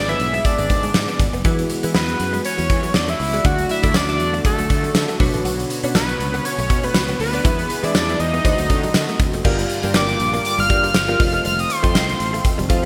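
A 120 BPM 4/4 groove with a light 16th-note swing drives this nostalgic, urgent 1980s-style pop excerpt, where an up-front big rock kit with fat snare, punchy kick, tambourine and gated reverb backs a warbling sawtooth analog lead melody with vibrato, chorus, shimmer reverb and digital delay, glassy decaying digital keys, a smooth detuned pad in the background, a growly fretless bass, a very quiet clean picked guitar riff, and an intimate bowed violin section from 0.5 to 9.2 seconds, all in bright digital production that settles into G minor at 9.4 seconds.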